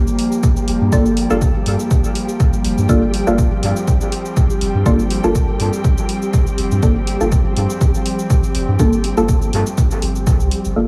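An airy, breathy pad and a flickering, grainy texture open this nocturnal, hypnotic dub techno cut at 0.0 seconds, the pad holding sustained chords with a warbling, vintage chorus while the granular texture drifts above it in its own reverb. Both ride a sidechain pump, which gives the stillness a gentle breathing motion at 122 BPM in 4/4, with a slight 16th-note swing. A layered, overdriven electronic cabasa and hi-hat slips in at 0.1 seconds, joined at 0.4 seconds by a punchy analog kick that sits up front in a small room. A soft, round dub sub bass enters at 0.7 seconds, pumping along with the pad. At 0.9 seconds a deep, mellow chord stab arrives, plucked and decaying, coloured by chorus, phaser, vintage 12-bit sampler grit and a dub echo. The whole passage rests on a single G minor seventh chord, set in light reverb with vinyl crackle and small-room ambience, and it is cut from a longer piece.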